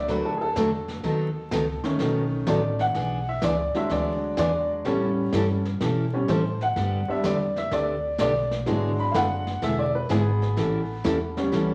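A swung 4/4 at 126 BPM sets a playful, down-home western swing groove in this short country cut, carried by a dark, smooth brush kit on brushed snare and hi-hat and a woody, growly pizzicato upright bass. A bright, brilliant upright piano takes the solo up front with long sustain for the full 11.7 seconds, while a full-bodied picked dreadnought acoustic guitar sits up front too, moving through D, B7, E7, A7 and G. The sound has a wet large-studio reverb and a layer of vinyl crackle for a vintage feel.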